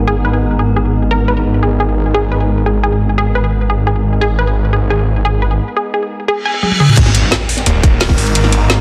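Dark technical drum and bass at 174 BPM in G# minor, mechanical and aggressive, cut from a longer piece and built on a G#madd9 chord. An eerie, inharmonic FM drone with a slow attack and chorus holds sustained chords throughout, pumping against the sidechain beneath a snarling, detuned saw bass that growls up front with heavy distortion. A lush, punchy unison pluck spins arpeggios through a digital delay until 6.9 seconds. A reverse cymbal rises from 6.4 seconds as a drum fill from the drum and bass kit, with its woody snare and metallic hats, leads into the drop at 7.0 seconds, where an impact lands and a tight electronic kick hits hard at the front. Behind it sits a crunchy breakbeat kit with a high-tuned snare, dark cymbals and a rolled-off top, filtered and tucked into the background, all in a light digital ambience.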